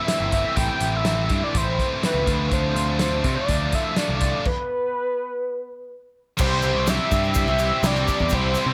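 A fat, detuned sawtooth lead with a sub octave, chorus and vibrato sits up front, carrying the melody through this jangly, wistful indie rock excerpt in C major at 124 BPM in a straight 4/4. Beneath it, a scooped, high-gain electric guitar plays a bright, distorted picked riff, while a raw garage guitar adds an overdriven riff further back, colored by subtle chorus and analog delay. A loose, small-room drum kit with a fat snare, tight kick and rolled-off top joins a growling, overdriven picked electric bass as the harmony moves from Am to Dm. The band hits a stop from 4.5 to 6.4 seconds, and when the C chord arrives at 6.4 seconds, a very quiet, vintage organ-string pad with a soft attack and ensemble chorus enters on sustained chords, alongside a grainy, distant egg shaker. A moderate studio reverb gives the whole mix a modest sense of space.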